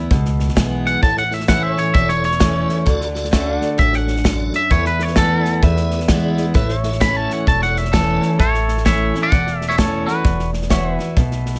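Honky-tonk and classic country at 130 BPM in 4/4 with a swung eighth-note feel, this short cut from a longer piece in A major carries a nostalgic, heartfelt mood. A bright, full-bodied steel-string acoustic guitar picks the accompaniment, while a woody pizzicato upright bass holds down the low end and a natural country drum kit, airy and up front with a punchy kick and medium-tuned snare, drives the hi-hat, kick and snare groove. Pedal steel guitar, compressed and played with fingerpicks, lays sustained slide chords with volume swells underneath. From 0.9 seconds a clean, scooped, twangy electric guitar carries the melody, and its solo stands out through the opening stretch up to 8.4 seconds. A piping tonewheel organ, lightly overdriven with key click, chorus vibrato and a slow rotary speaker, adds accompaniment from 1.0 to 8.3 seconds. The close, detailed recording has little reverb, and the chords move from E through A and D to Esus4 and back before the passage closes on Esus2.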